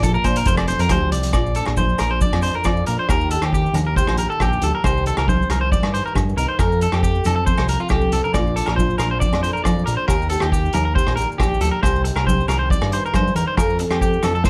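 A lightly reverberant, vintage-toned mix opens this sunny, danceable highlife guitar band excerpt in Bb major at 137 BPM, where an up-front, twangy electric guitar at the edge of break-up picks arpeggios through slapback echo over a dark, full-bodied nylon-string guitar plucked with the thumb. A fat, nasal analog bass with a saturated filter pluck anchors the Bb, Eb, Cm and F progression, while a punchy vintage drum kit with a rolled-off top drives the straight 4/4 feel and drops a fill at 7.9 seconds. Ringing congas played with soft hands, grainy maracas and agogo bells sit quietly in the background.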